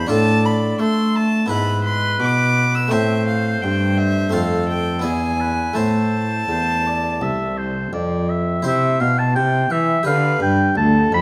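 A dark, up-front cello anchors this flowing, grave baroque-style sonata movement, its single bowed gut-string voice carrying a reedy sound with a smooth top. Above it, one violin sings the melody in period style, its bowed tone biting and nasal, while a solo oboe weaves a second line with light vibrato, sounding distant and roomy in a classical manner. A bright Flemish-style harpsichord with one set of strings fills out the accompaniment with its plucked sound, completing the continuo beneath the two upper voices. All four parts play together for the full 11.2 seconds in a straight four-beat metre, moving through a minor-key progression from Dm/A and E/G# to Am, F and E7, before a fresh phrase starting at 8.6 seconds turns toward C and G7. Close, detailed microphones capture the players within a moderate recital hall reverb, and the passage is cut from a longer piece.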